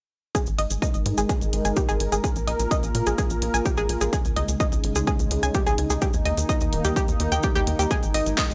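This dark, driving melodic techno excerpt at 127 BPM in a straight 4/4 opens at 0.3 s with several parts entering at once: a detuned, sawtooth pad holding sustained chords with a slow attack and chorus, a round analog pluck playing arpeggios with a sub octave and tape echo, a layered deep house kit of handclaps and hi-hat in studio reverb, and a heavy, up-front electronic kick with a tape-warm character and a small-room re-recorded quality. A close, grainy acoustic cabasa joins at 0.4 s, followed at 0.5 s by a tight, punchy sequencer bass with a fast attack and decaying filter pluck that sits low in the mix's foundation. The pad, pluck and bass all carry sidechain pumping, giving the synths a breathing pulse against the kick. The harmony moves through G#5, A#5, C#5 and D# before returning to G#5, with the evolving pad set beneath the bright, chorused pluck. The overall sound is dry and gritty, with a hardware edge and little reverb.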